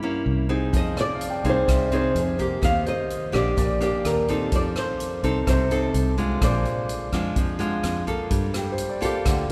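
Bossa nova at 127 BPM with a sunny, breezy mood, this short excerpt sets a bright, fingerpicked nylon-string guitar melody with audible finger squeak up front over a dark, thumb-plucked nylon-string guitar accompaniment, a round, foam-muted fingered electric bass, a swinging big-band drum kit with boomy kick, hi-hat and rim click entering at 0.7 seconds, and a smooth, vintage grand piano with long sustain in the background, all bathed in a cathedral-like reverb of a church or concert hall as the chords move from C7b9 through Fm7, Ebmaj7, F7 and Bb7 to Gm9.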